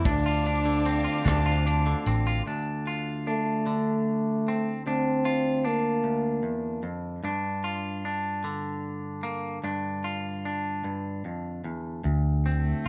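A straight 6/8 pulse carries this melancholic, heartbroken acoustic folk-pop ballad fragment: a bright, twangy clean electric guitar is picked throughout, while a round, dark fretless bass, a country drum kit of hi-hat, punchy kick drum and rim click, an intimate bowed cello with plate reverb and a lush string section in the background fill the opening seconds, before a mellow French horn plays a smooth solo from 3.3 to 6.8 seconds and the bass and cello return near the close, all set in a large studio room.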